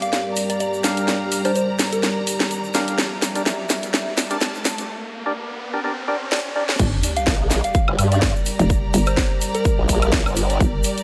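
A swung 126 BPM bass house groove in G dorian opens on a garage drum kit with a cracking snare, woodblock, hi-hat and crash, plus a grainy tube shaker in the background, while a moody, wave-folded analog pad, a biting, distant string section and a hollow, percussive organ stab with dub echo build alongside a soft bell melody and a background riser until the drop at 6.8 seconds. There a punchy, up-front electronic kick and a bouncy, overdriven FM bass hit with an impact, joined at 7.3 seconds by a detuned formant-sweep wobble bass, as pumping sidechain on the pad, strings and basses drives the aggressive, swaggering mood. The whole cut from a longer piece sits in light reverb.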